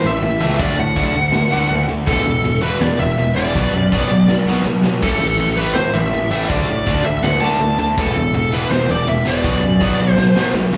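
A half-time feel drives this short punk rock cut in straight 4/4, the raw garage drum kit coming in at 0.2 seconds with a punchy kick, a medium-tuned snare, hi-hat and crash, all sounding gritty and mid-forward in a bright stone room, with a rolled-off top. Fills break the groove at 4.7 and 10.2 seconds. Underneath, a fuzz-soaked picked electric bass growls with overdrive and a direct, amped edge. In the background, a tight distorted guitar and an overdriven semi-hollow guitar with a hollow-body ring both play the riff over A5, D, E5 and Bm. Up front, a smooth, dark lead guitar carries the melody, its overdriven tone trailed by a slapback echo. The mood is aggressive and raw, heard as a live gig through the venue's PA, with club ambience and very little reverb.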